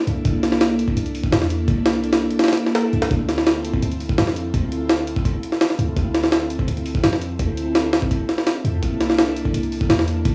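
Drum and bass with a jungle edge, this dark, frenetic 168 BPM clip in D minor sets a gritty, pitched-up sampler drum kit with a thumpy kick, high-tuned snare and hi-hat up front over a boomy, sine-like 808-style bass and an airy, breathy pad with chorus and vintage 12-bit grit holding sustained chords that move from C13 to Dm7 and back, all within a home cassette sound dressed in short studio reverb.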